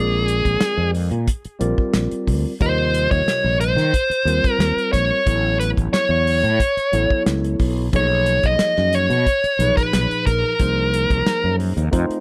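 A dark, overdriven lead guitar carries the melody over a barky, gritty electric piano with phaser and a bright, growly fretless bass from the opening moment, with a dry, damped 70s drum kit of tight kick, snare and hi-hat joining at 0.3 seconds, in this intense, driving electric jazz fusion excerpt in Bb minor at 90 BPM, moving through rich chords from Bb13 to Cm7b5 under light reverb.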